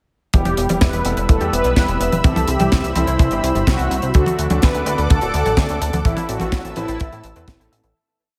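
Set in a light, small-room ambience, this short, nostalgic and bittersweet italo disco piece, which fades out from 5.4 seconds, pairs a round, brassy synth lead with vibrato carrying the motif over a thick detuned pad, a very quiet warbling arpeggiated pluck, dotted-rhythm chords from a clear background grand piano, a glossy, nasal sequenced sixteenth-note synth bass, an up-front four-on-the-floor kick and a polished, tight funk kit with a high-tuned snare and gated reverb.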